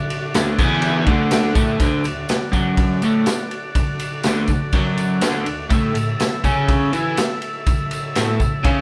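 Garage rock with a raw, swaggering mood, this excerpt of a band playing live in one room puts a bright, scooped, double-tracked overdriven electric guitar riff up front beside a gritty, saturated drum kit of punchy kick, dark ride cymbal and snare, while a vintage combo organ holds buzzy sustained chords with light vibrato and adds a fill from 4.7 to 5.7 seconds, and a jingly tambourine sits in the background, the whole room carrying a moderate large-studio reverb.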